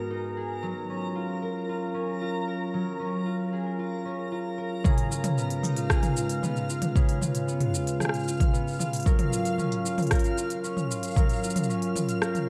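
A ringing, fingerpicked concert harp plays arpeggios with tape echo at the front of this delicate, wistful folktronica excerpt, set at 114 BPM in a straight 4/4 and tuned to A4 = 436 Hz over chords moving from G#m7 and F#maj7 to C#7 and back to F#maj7. Beneath it, a warbly, nostalgic lo-fi pad sustains detuned chords through chorus and reverb, while a reversed, granular texture adds dreamy, swelling tones higher up. An organic electronic drum kit of crisp, low-pass-filtered hi-hat, rim click, shaker and toms sits up front, joined by a deep, tape-warm electronic kick from 4.8 s to 11.3 s, all within a dark, warm production with light reverb.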